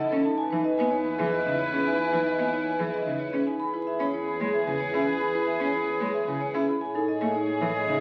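A ringing, metallic vibraphone struck with hard mallets carries the melody in this urgent, hypnotic minimalist classical pattern piece in C# minor at 112 BPM in 3/4, over woody marimba arpeggios, a bright clarinet second line, smooth sustained chords from a studio violin section, a rich bowed cello entering at 0.1 s and a soft-attacked double bass with expressive portamento, heard in a reverberant recital hall through the crackle of a very old 78 rpm record and cut from a longer piece.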